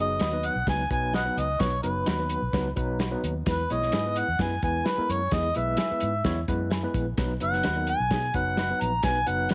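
Set in a small, lightly reverberant room with a rolled-off, muffled top end, this short excerpt of uptempo 1960s-style soul moves at 129 BPM in a straight 4/4, sounding danceable and joyful in B major. Out front, a mellow, jazz-style harmonica carries the melody with a soft attack, light vibrato, scooped notes and tongue slaps, its smooth top sitting comfortably over the band. Beneath it, a barky tine electric piano, lightly overdriven through a combo amp with a medium tremolo, supplies bright accompaniment, while a dark, round, foam-muted fingered electric bass anchors the low end. A dry, lo-fi soul drum kit with a tight kick and medium-tuned snare joins at 0.2 s, alongside a clean, compressed electric guitar placing fingered stabs in the background with a slapback echo. The harmony shifts from B to E at 3.5 s before settling back on B.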